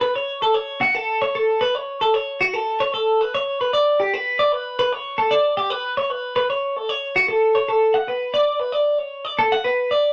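Rolling along in 6/8 at 76 BPM counted in dotted quarters, this short rock excerpt has a straight, unhurried pulse and a wistful yet bright mood in D major. A lone twelve-string electric guitar carries everything, picked cleanly with a twangy, bright edge that sits up front in the mix. Its tone is compressed, and the line ranges between F#4 and F#5. A moderate studio reverb gives the guitar a little air. Around 7.9 seconds the music shifts into a new section that carries on until the cut at 10.1 seconds.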